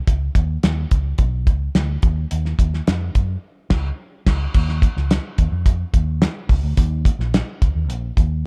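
A cloth-damped, thuddy drum kit with a tight kick, medium-tuned snare, hi-hat and dark crash cymbal sits up front beside a round, punchy, foam-muted fingered electric bass in this danceable, uplifting 1960s-style soul excerpt at 107 BPM, where a full-band accent lands at 3.4 seconds before the next section begins at 4.5 seconds, all captured in a dry, mellow production.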